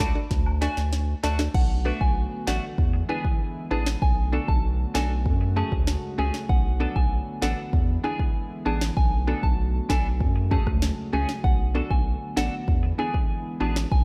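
A straight 4/4 dancehall groove at 97 BPM in B dorian drives this hypnotic, tough excerpt, built on an electronic afro-pop drum kit that sits up front with a deep kick, sharp snare, metallic hi-hats, rim clicks and crash cymbals, plus a drum fill from 0.3 to 1.5 seconds. A thick, saturated sine sub bass sits just as prominently underneath, its fast attack and sustained notes anchoring the low end. A very quiet cabasa and woodblock adds an acoustic, small-room rattle only in the opening moments, stopping at 1.4 seconds. A soft, pure FM synth bell carries the melody with chorus and delay. A woody, round synth pluck with a noise layer adds accompaniment in the background, and a twangy, compressed clean electric guitar with lush chorus plays arpeggios. From 1.5 seconds a smooth sawtooth analog pad enters with slow attack, chorus and sidechain pumping, sustaining chords that cycle through Bm7, E7 and F#madd9 in a dark production with light reverb.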